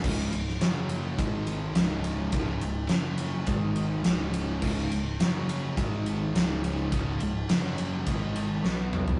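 A heavy, menacing hard rock excerpt at 105 BPM is built on a huge, up-front arena drum kit, punchy kick, fat snare and bright cymbals, driving two sludgy overdriven guitars and a tight, double-tracked distorted guitar that churn out a C#5–F#5–G#5 power-chord riff in the background over a growly, bright fingered electric bass, all in a rough rehearsal-room sound with tube saturation and a dull top end, until a drum fill at 8.6 seconds arrives together with a B5 chord.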